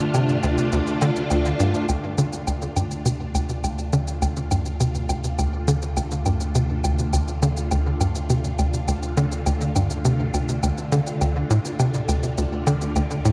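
A straight 4/4 pulse at 103 BPM drives this ambient, sequencer-driven space music in D minor, set on a single D minor chord and cut from a longer piece. A tight, punchy sequencer bass carries the riff up front from 0.1 seconds, its sawtooth and square-wave tone shaped by a filter pluck and a decaying envelope, touched with subtle chorus and tape echo. Behind it, a phased string machine holds sustained chords from the start, its bright, vintage sound swirling and warbling through ensemble chorus and phaser, with a slow attack and long release, and it fades in from 1.9 seconds. At that same point a round, deep sine sub bass arrives on a low D, while a filter sweep moves across the analog synth bass, lending the passage an expansive, mysterious lift. Quiet shaker and woodblock, electronic and tape-tinged, tick along beneath with tape echo, and a wet cathedral reverb with a 6.0-second decay places the whole in a vast, echoing space.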